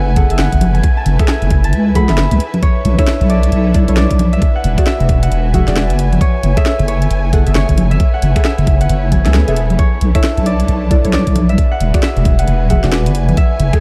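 A lightly reverberant, moody late-night mix sets a deep, wobbling bass with a chorus sheen up front, beneath a fingerpicked Celtic harp melody that rings through a delay. This UK garage cut runs at 134 BPM with a swung two-step feel in F# minor, moving through F#m7, Bm11 and E9. A knocking, overdriven electronic kick and a garage kit of cracking snare, hi-hat, congas and finger snaps enter at 0.2 seconds, while lush bowed violins and dark sul tasto studio strings pump in the background alongside soft, warbling vintage chord stabs, and a very quiet electronic swell appears at 9.2 seconds.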